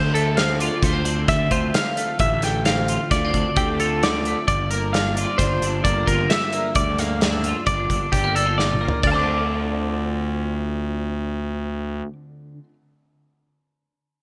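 Wistful and intricate, this short cut from a longer math rock and midwest emo piece moves in an odd 5/4 metre with a straight feel, shifting from Dm7 to Gm7 and back. Two twelve-string electric guitars carry the harmony, one picking accompaniment in the lower and middle range under an ensemble chorus, the other spinning high arpeggios with a warbly pitch drift, both clean, compressed and twangy. Beneath them a fuzz-driven picked bass adds a growly, overdriven low end, sitting up front in the mix. A loose indie drum kit joins at 0.2 seconds with punchy kick, medium-tuned snare, toms, hi-hat and dark cymbals, its gated reverb and pumping room giving a warm, rolled-off thump, and a fill at 8.6 seconds leads into a brief new section before the drums drop out at 9.1 seconds. A lush hall reverb and bright 1980s-style digital production wrap the whole ensemble in a glossy, spacious sheen.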